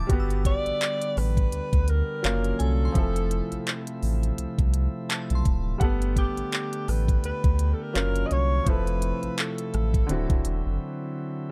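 A glassy synth bell with chorus and delay glints in the background over an intimate baby grand piano, a bright chamber organ with chiffing flute stops and a thick, saturated sub bass from the opening moment, before an up-front trap drum kit with a knocking kick, crisp hats, handclaps and rim clicks arrives at 0.1 s and a breathy, distant alto saxophone with vibrato, scooped notes and delay takes the solo melody at 0.5 s, creating a dreamy, romantic contemporary R&B groove at 84 BPM in G major with a swung 16th-note feel, a dark, dry production and a short break at 10.8 s closing this fragment of a longer piece.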